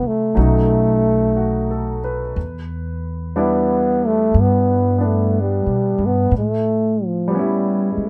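Romantic and intimate, this brief jazz ballad moves at a slow 60 BPM with a gentle swing, drawn from a longer piece. A mellow, close-miked trombone carries the melody up front with light vibrato, while a clear baby grand piano with long sustain accompanies and a woody pizzicato upright bass anchors the low end, also placed up front. The sound is dry and detailed, and the harmony moves from B7 to Em7 at 2.4 seconds and on to A7 at 6.3 seconds.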